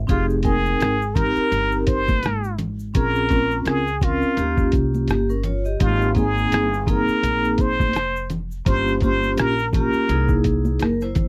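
Cool and smoky, this jazz-hop excerpt in F minor swings at 84 BPM as a plunger-muted trumpet with wah-wah and vibrato sings up front over ringing vibraphone with slow motor vibrato, woody pizzicato upright bass, a muffled, pitched-down sampler-style drum kit of thumpy kick, hi-hat and rim click, and tube shaker and congas in the background, all caught in a dry, close 1970s-style studio sound as the chords move from Fm7 through Abmaj7 to C7alt.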